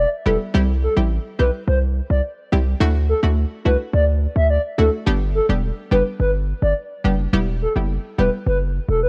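Dancehall with a bouncy, hypnotic feel, this short cut from a longer piece moves in a straight four-beat groove over a cycle of Em, C, Dadd9, G and back to Em. A hollow, woody synth lead with a clarinet-like voice carries the melody from the start, its soft attack, gentle vibrato and chorus giving it a mellow, sustained character. Underneath, a hard-hitting 808-style bass sits heavy and punchy, with a fast attack that decays into a deep sine body. An analog pluck enters at 0.3 seconds and fills in the harmony with round, full-bodied notes, its short filter-pluck decay and chorus keeping it buoyant until it stops at 8.4 seconds. The recording is dry, with little reverb, and carries a worn, warbling cassette-tape quality whose pitch drift adds to the hypnotic mood.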